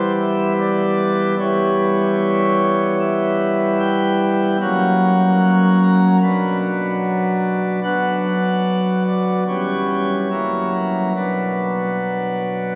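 Moving in a rubato 4/4 around 74 BPM, this grave, dark chorale-style classical piece in B minor is a short cut from a longer work for solo pipe organ, heard on its full plenum with brilliant mixtures and a romantic voicing set up front, spanning D1 to B5. The harmony travels from E minor through F# to B minor, then passes through C#m7b5/E and F#7 before settling on B minor at 11.2 seconds. A cathedral reverb with a 6.0-second tail surrounds the organ, and the crackle of a very old 78 rpm record sits over the whole sound.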